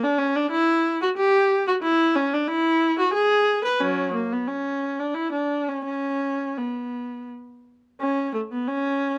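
A single viola carries this grave, solemn classical fragment, a baroque-style suite movement played by one bowed player placed up front. Its tone is rich and focused, shaded with vibrato, moving between the low F#3 and B4 over a rubato in triple metre. The production is dark, with a light reverb that gives the lone line a little air around it. The passage opens on its main section, which returns at 8.0 seconds before the fragment breaks off at 9.2 seconds, cut from a longer piece.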